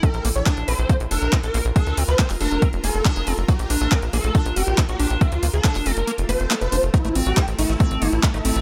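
This alien, psychedelic trance excerpt at 139 BPM opens with a punchy, up-front electronic kick, a tight, wave-folded sequencer bass with a filter pluck, and an overdriven drum kit of handclaps, bright hats and ride, alongside a swarming, detuned rave lead with a pitch-rise attack, chorus, phaser and dub echo. A squelchy, resonant acid bass riff runs through phaser, cassette tape and dub echo, while a blurred granular cloud pad drifts in the background, both breathing with sidechain pumping. The kick drops out from 6.1 to 6.9 s as a very quiet electronic swell passes, and at 7.2 s a pulsing, tempo-synced gated texture joins on sustained chords.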